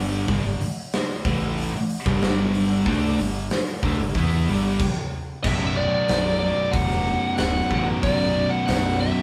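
Played live in a small stone room with moderate reverb, this heavy, brooding stoner and doom metal passage stacks a bright, double-tracked overdriven electric guitar and two picked fuzz guitars, one warm and one dark and very quiet, over a growling overdriven fingered bass and an up-front acoustic rock kit with a punchy kick and medium-tuned snare, moving from a G5 riff through a brief stop at 4.8 seconds into a Bm passage, with a compressed fuzz lead guitar entering up front at 5.4 seconds, just ahead of the change.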